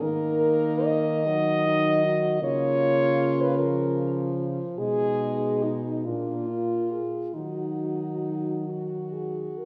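Solemn and elegiac, this short cut from a longer classical piece for horn quartet moves in a slow, rubato 6/8 at about 44-53 BPM in Eb minor, with chords passing from Ebm through Bbm/Db and Abm/Cb to a bare Bb5 before returning to Ebm at 7.3 seconds. The melody horn sits distant and roomy in the background with light vibrato and a soft attack, while a second horn carries an up-front line with a smooth top above it, a third horn gives mellow accompaniment, and a dark-toned horn holds the bass close to the listener. All four play throughout the roughly 9.7 seconds, bathed in a moderate concert hall reverb.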